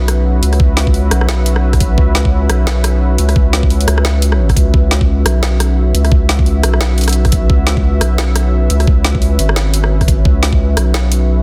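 A dense, heavily limited modern master with digital ambience frames this heavy, spacious half-time drum and bass excerpt at 174 BPM in C# minor, riding a swung sixteenth feel over a single C#m chord. An up-front, thick sine sub bass with saturation anchors the low end, while a moody, detuned sawtooth pad with a sub octave, slow attack, chorus and sidechain pumping sustains dark chords above it. Layered, overdriven drums with studio reverb fill out the groove: a woody, soft-clipped snare, bright hats and rim clicks, joined at 0.6 s by a knocking electronic kick.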